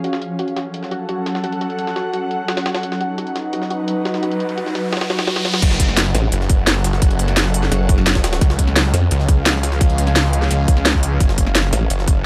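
Dark technical drum and bass, tense and aggressive, taken from a longer piece. It opens with a swarming, ring-modulated drone holding sustained chords beside an airy, breathy pad and a soft, round pluck tracing arpeggios through lush chorus and dub echo in the background, all breathing with sidechain pumping. Underneath, a gritty, pitched-up jungle sampler-style kit ticks out filtered hi-hats and a high-tuned snare, and an electronic riser enters at 4.3 seconds. The drop lands at 5.6 seconds with a tight electronic kick and an up-front drum and bass kit of cracking snare, crisp hats and crash cymbal, joined by a snarling, growling saw bass heavy with distortion and overdrive. From 6.1 seconds a formant-sweep wobble bass adds a saturated, detuned layer, while the drone keeps evolving under light reverb.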